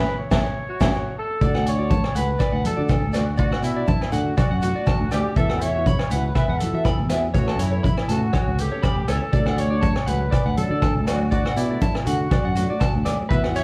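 A slightly broken-up, twangy electric guitar rings out in high arpeggios over this danceable highlife groove in D major at 121 BPM, with a lightly swung sixteenth-note feel. A dark, tight horn section with light vibrato carries the melody, while a round fingered electric bass anchors the low end and an up-front vintage drum kit with a punchy kick, medium-tuned snare, rim clicks and hi-hat drives the beat. A fingerpicked flamenco guitar, complete with finger squeaks, sits in the background alongside ringing agogo bells, a grainy close shekere and thick-skinned congas. A very quiet, raspy tenor saxophone with scooped notes slips in only briefly between 0.3 and 0.9 seconds, while the full band hits an accent in the opening moments. The chords move through Aadd9, D and Esus2, and the whole band plays live in one room with a moderate large-studio reverb, giving this cut from a longer piece a warm, vintage glow.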